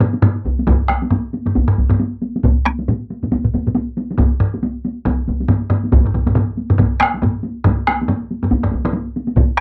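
Swung sixteenths at 138 BPM in 4/4 speed up through this driving, powerful Japanese traditional taiko excerpt. Three taiko ensembles pound up front: one with heavy sticks and a compressed, saturated punch; one with hard sticks and a vintage, band-limited tone; and a heavy-stick group in a small room that enters at 0.5 seconds. A fourth heavy-stick ensemble sits close and dry in the background, and the whole is captured as a 1970s-style studio recording with light reverb.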